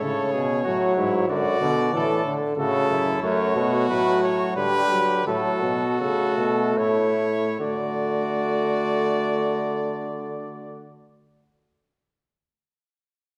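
Lively and elegant, this excerpt from a classical imitative canzona for brass ensemble moves in 3/4 at 71-95 BPM in D major, slowing down between 2.3 and 7.6 seconds before a new section arrives at 7.6 seconds. A clear, up-front trumpet carries the melody with light vibrato and a soft attack, a close-miked trumpet with a warm tone plays the second line, a mellow trombone supplies accompaniment, and a bright, distant bass trombone anchors the bass. The harmony passes through chords such as F#m, G/D and A69 before settling on D, all set in a reverberant recital hall.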